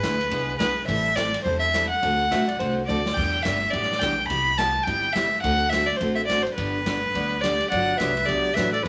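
A rich, smoothly bowed fiddle with light vibrato sits up front, carrying the melody in this cheerful, playful western swing excerpt in G major at 211 BPM. Beneath it, a bright, full-bodied acoustic guitar picks the accompaniment with audible finger squeak, a woody, thumpy pizzicato upright bass holds the low end, and an airy, polished big-band drum kit with a punchy kick swings along, adding a fill at 2.9 seconds. A dark, clean lap steel slides in briefly at 2.3 seconds, and a warm, classical-style clarinet enters at 7.4 seconds, the whole sound sitting in a moderate studio reverb.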